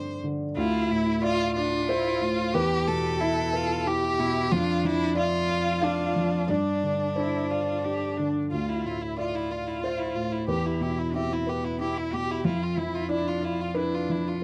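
Melancholic and longing, this neoclassical excerpt for piano and strings moves in a rubato 3/4 at 91 BPM in D dorian, circling through Gsus4, Dmadd9, Em and Dmadd9/F. A felt-muted upright piano, soft and intimate with audible action noise, carries the accompaniment up front while a single bowed violin, rich and focused with vibrato, sings the melody close beside it. From 0.6 seconds a lone cello adds a second line that sits more distant in a dry, close 1970s-style studio sound touched by light reverb.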